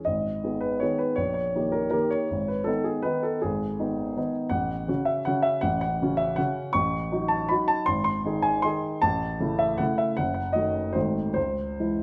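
A moderate large-studio reverb, lingering about 1.4 seconds, gives this short fragment of a longer piece a spacious yet close setting. It is a classical piano waltz in 3/4, elegant and nostalgic in mood, with a rubato feel that moves between 138 and 173 BPM. A baby grand piano plays alone for the full 12.0 seconds, sounding warm, natural and up front, and it is tuned to A4 = 444 Hz. Its range runs from a deep F#1 up to C#6. The harmony circles G#m and D#7/A# before drifting through F#m/A, D#m7b5/A and an unexpected A, then gathers on G#7b9 and settles on C#m at 11.4 seconds.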